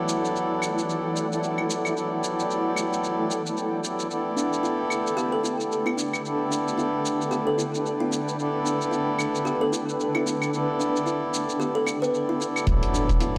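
This excerpt of meditative, mystical organic downtempo opens with a reedy, breathing harmonium up front and a blurred, evolving granular pad, both gently pumping against a sidechain, while a quartz singing bowl rings almost imperceptibly underneath. A gritty, sampler-style layer of electronic shaker, claves and hi-hat sets a swung 112 BPM pulse in 4/4, and the harmonium carries a digital delay as the chords move from Em11 to A9sus4. At 4.4 seconds a woody, hollow-toned kalimba enters with soft, ringing arpeggios trailed by its own delay. The moderate concert-hall reverb gives the parts an airy, spacious setting. Near the end, at 12.7 seconds, the harmony returns to Em11 as a round, deep analog bass note lands with a soft, overdriven electronic kick and a background impact, closing the passage.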